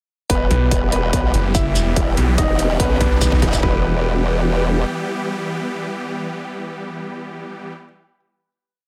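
A half-time 4/4 groove at 144 BPM drives this short, menacing, heavy wobble dubstep piece in E minor, with a punchy overdriven electronic kick and a layered hi-hat and shaker building into a drum fill from 2.0 s until the beat drops away at 3.6 s. Two up-front basses sit beneath: a chorused formant-sweep wobble bass with changing wobble speed, and a snarling, growling, distorted sawtooth bass whose chopped phrases answer it, while a very quiet electronic riser marks the transition. A huge, lush supersaw pad pumps with sidechain and a clear concert grand piano repeats a riff in octaves with delay, both carrying on through the final E minor chord in light digital ambience.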